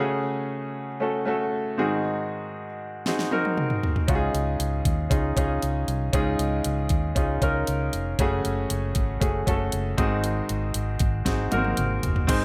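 Piano-driven pop at 117 BPM with a hopeful mood, this short excerpt opens on a bright, brilliant concert grand piano playing accompaniment alone over chords such as Gbmadd9, Ab7 and Dbadd9. A produced, electronic-sounding pop drum kit with a knocking kick and fat snare enters with a fill at 3.1 seconds, and a dark, round, foam-muted electric bass follows at 4.1 seconds. The piano and drums sit up front in a bright 1980s-style digital production with moderate plate reverb, and another drum fill arrives at 11.3 seconds.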